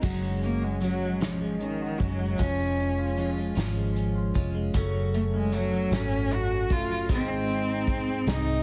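Swaying in a slow, straight 6/8 at 51 BPM, this tender pop ballad excerpt moves through Gbsus2, Db/F, Gbm and Ab over a bundle-stick acoustic drum kit with a tight kick and medium-tuned snare, beneath a dark, round, foam-muted fingered bass. A bright, picked dreadnought acoustic guitar plays arpeggios through digital delay, while a twangy, scooped, double-tracked clean electric guitar sits in the background as accompaniment. From 0.4 seconds a single bowed cello carries the melody up front, rich and smooth with vibrato and delay, all set in a small, lightly reverberant room with a heavily compressed, radio-like sound.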